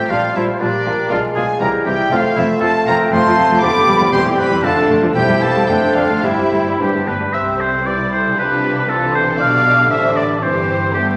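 A spirited, graceful classical-period symphonic movement at a quick 118 BPM in 2/4 with a rubato feel, moving from F major into C major at 3.1 s. A soft-edged, sul tasto first violin section carries the melody over a clear, up-front oboe line, a focused second violin section, and background clarinet and pure-toned flutes, while expressive violas and a mellow bassoon accompany, distant horns sustain chords, and cellos with portamento join double basses on the bass line. The clarinet, flutes and bassoon fall away at 7.1 s, all in a wet scoring-stage reverb with vinyl crackle.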